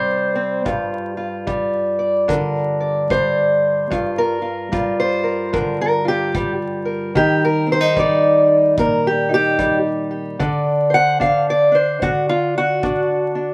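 A fingerpicked steel-string acoustic guitar opens this excerpt of mournful, soulful acoustic country blues in G minor, carrying the melody up front with a dark, boxy parlour tone and a touch of slapback echo. A distant kick drum arrives at 0.7 seconds, punchy yet roomy with a small-room character and a brushed quality, sitting far beneath the guitar. The tempo is a slow 74 BPM in 4/4 with a swung eighth-note feel. The guitar plays a solo throughout, moving from a brief C5 into Gm7, then to Eb at 7.2 seconds and D7 at 10.4 seconds. The sound is dry, with little reverb, and a layer of vinyl crackle gives it an aged, intimate character.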